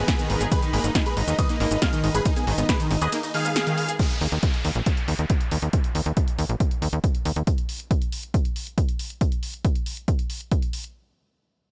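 A dry, punchy mix opens this euphoric, soaring uplifting trance excerpt on a drop, where a huge detuned supersaw melody and a brilliant background grand piano pump with the sidechain over a silky string pad, chorused pluck arpeggios and an up-front nasal sequencer bass with tube saturation, before those upper parts stop at 4.0 s and a downlifter sweeps in over the bass, a tape-warm electronic kick that runs to 10.6 s, and drum machine hi-hat, ride, shaker and snare that carry on to 10.9 s.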